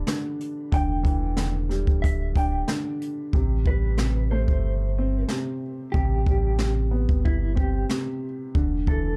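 A deep, full sine sub bass with an added octave sits up front, its fast attack and sustained notes anchoring this reflective, gritty boom-bap hip-hop excerpt cut from a longer piece. Beside it, a jazz drum kit played with brushes sounds acoustic and natural in a small room, pairing a boomy kick with a medium-tuned snare under a relaxed swing. At 3.3 s the hi-hats drop away as the harmony shifts from Em7 to Am9, leaving just kick and snare for the rest of the passage. A dark upright piano supplies woody, intimate accompaniment in its lower-middle range, with a vintage character, short sustain and audible action noise. Above it, a clean, fingered electric guitar carries the compressed melody with a tremolo shimmer, all within a dark, warm mix touched by light reverb.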